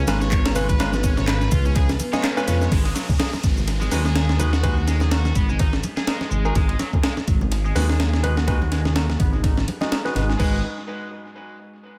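An echo-heavy, lightly reverberant mix opens this swaggering, funky breakbeat excerpt at 125 BPM, swung on the 16ths in G# dorian. Up front, a gritty, compressed sampler-style break kit thumps out kick, high-tuned snare, hi-hat, ride and crash in a small room with tape echo, while a background house kit adds tape-warm handclaps, ride and shaker, and very quiet congas ring under soft hands. A deep, rumbling detuned saw bass holds the low end with a beating, sustained tone, and a very quiet, moody pad of wave-folded, ring-modulated chords sits underneath with chorus and slow attack. A cranked, double-tracked electric guitar riff carries overdrive and vintage 12-bit sampler grit, and a brilliant, worn concert grand with audible action noise plays stabs, both colored by low-pass filtering and tape echo. After an opening drop on C#7 and a band accent at 2.2 seconds, the music moves to G#m7 at 2.7 seconds, where filter sweeps begin on the guitar and piano and a faint electronic downlifter runs until 6.6 seconds.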